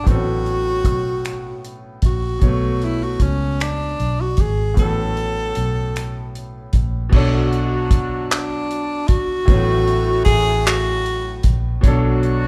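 Heard in a recital-hall space with a moderate reverb of about 1.5 seconds, this slow six-eight R&B piece in B minor moves at 51 BPM with a sultry, yearning mood, and it is cut from a longer piece. A close-miked tenor saxophone carries the melody up front in a jazz style, its subtone voice soft in attack and shaded with light vibrato. Beneath it, a clear concert grand piano with deep bass and a vintage smoothness plays the accompaniment over chords that move between A69, Bsus2 and Bm9. A foam-muted, amped, fingered electric bass sits up front with a round, dark tone, while a cloth-damped acoustic drum kit adds a thuddy, tight kick, dark cymbals, hi-hat, finger snaps, handclaps and a crash, all dry and rolled off at the top. At 7.1 seconds a mellow horn section enters with tight, octave-doubled stabs, soft in attack and played in a jazz style with light vibrato.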